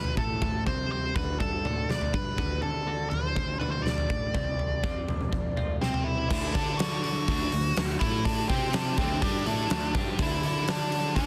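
Cut from a longer piece of anthemic, restless quiet-loud alternative rock in D mixolydian at 123 BPM, this opens with a dark, nasal, up-front overdriven lead guitar through a parked wah and analog delay, a clean, compressed twelve-string electric guitar playing arpeggios in the background with subtle chorus, a growling fingered bass with overdrive, and a huge arena drum kit with a fat, softly clipped snare, punchy kick and bright cymbals in a pumping hall, until at 6.3 seconds the twelve-string stops and a distorted, picked electric guitar riff enters, the whole mix dense and heavily limited with small room ambience.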